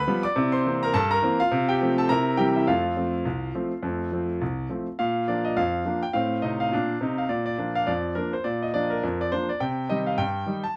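Lively, jaunty ragtime for a solo concert grand piano in a swung 2/4, its brilliant, up-front tone reaching from deep bass to a high treble in a moderate studio reverb, moving through C7 and F before a new section at 5.0 s turns to Bb, F7/A and Cm as this fragment of a longer piece breaks off at 10.8 s.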